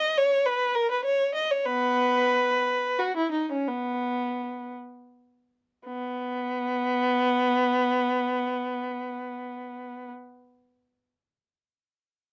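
In 12/8 with free rubato at 50-72 BPM by the dotted quarter, slowing through the first 5.9 seconds before a new section begins, this serene, dance-like baroque-style suite movement in B major features a single unaccompanied bowed violin, up front and focused with vibrato and a smooth top, set in light reverb within a dark, warm production, in a short passage cut from a longer piece.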